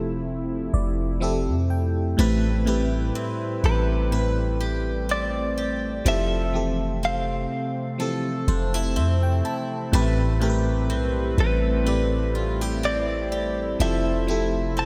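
A moody, longing contemporary R&B excerpt at a slow 62 BPM in A minor, where a glassy, bell-like FM electric piano with chorus, phaser and tremolo plays fills over a smooth detuned analog pad and a deep, boomy 808-style bass sitting up front, before a boxy picked acoustic guitar adds swung arpeggios from 2.2 seconds and a compressed, direct-recorded clean electric guitar carries the melody from 3.7 seconds, all moving between Fmaj7 and Am9 in a dreamy mix soaked in lush hall reverb.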